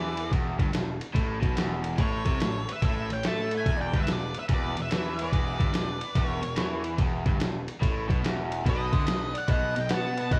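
Blues rock in the power-trio mold with a southern rock edge, this driving, swaggering excerpt moves at 144 BPM in 4/4 with a swung eighth-note feel. A dark, fuzzed-out octave lead guitar carries the melody up high, while a bluesy, distorted second lead guitar sits farther back in the mix. Underneath, a warm, double-tracked overdriven electric guitar plays a low picked riff over a bright, growly fuzz bass that is both direct and amped. A compressed, muffled, sampler-style drum kit sits up front with a thumpy kick, a medium-tuned snare and ride cymbal; it enters at 0.2 seconds and was re-recorded in a large room. The band plays live together in a studio with a moderate one-second reverb, moving from E5 to A and back to E5 before landing on B near 8.7 seconds.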